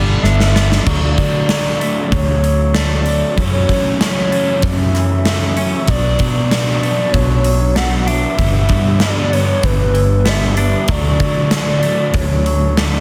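A straight 4/4 pulse comes from an up-front gated 80s drum kit with a punchy kick, bright cymbals and a stone-room sound, entering on a fill at 0.2 seconds, with a dark, round, foam-muted fingered bass beneath this blissful, wistful shoegaze and dream pop excerpt as it moves through G6, Dmaj7, F#m7 and Bm7. Two overdriven guitars sit in the background playing riffs: a crunchy one washed in reverse reverb and a hollow-bodied one with subtle chorus. A very quiet, double-tracked overdriven electric guitar riff stops at 0.9 seconds, while a clean, compressed semi-hollow guitar picks arpeggios through chorus and analog delay. On top, a soft, mellow sine lead with a sub octave, vibrato and portamento carries the melody through chorus and analog delay, all within small room ambience and a dense, heavily limited modern master.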